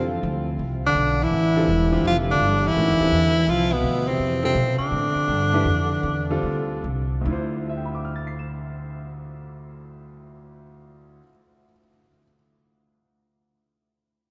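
A bright, punchy tenor saxophone, close-miked and up front with light vibrato, carries the melody of this searching, hypnotic modal jazz fragment in D dorian, swinging in 4/4 at 142-167 BPM and slowing from 4.2 seconds. A mellow bass clarinet with vibrato and a smooth top plays a second line until both horns stop at 6.8 seconds, while a clear grand piano accompanies and a woody, thumpy pizzicato upright bass holds the low end, in a vast, echoing cathedral reverb.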